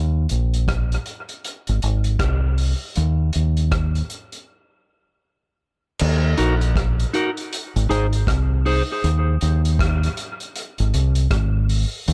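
Light reverb and studio ambience frame this deep, meditative dub reggae excerpt at 79 BPM with a swung sixteenth feel, where a round, up-front fingered electric bass anchors the low end from the start, a vintage drum kit of punchy kick, hi-hat, rim click and crash with dark cymbals sits lower in a pumping small room with dub echo, and a clean, scooped, picked electric guitar carrying dub echo appears briefly from 6.4 to 8.8 seconds over Ebm and Ab harmony.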